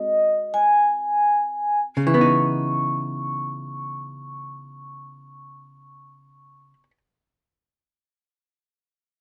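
A dry, close recording with a 1970s studio character and a touch of moderate reverb frames this smoky, intimate jazz ballad in C# minor, moving at a slow 36 BPM with a swung feel and easing back over its first 2 seconds. Up front, a vibraphone played with soft mallets carries the melody in a mellow, ringing voice with a slow motor vibrato, while a clean, picked hollow-body archtop guitar supplies electric, warm accompaniment. The harmony rests on a G#7b9 before settling onto C#m9 at 2.0 seconds, and the vibraphone stops at 6.8 seconds, just before the guitar at 7.0 seconds in this short cut from a longer piece.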